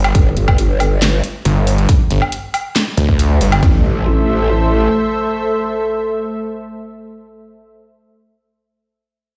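Heavy wobble dubstep in A minor at 138 BPM with a half-time feel, this chaotic fragment of a longer piece opens on a drop over G. A snarling, detuned sawtooth bass with overdrive and a moving notch, a chorused, formant-filtered growl bass, a dubstep kit with a huge snare, metallic hats, handclaps and woodblock, and a big-room kit with a punchy kick and toms all hit alongside a lush, airy unison pad that pumps to the sidechain. At 3.6 seconds the drums and saw bass stop as the harmony moves to A minor, leaving the pad, the growl bass until 4.9 seconds, and a background impact ringing through a bare stone room.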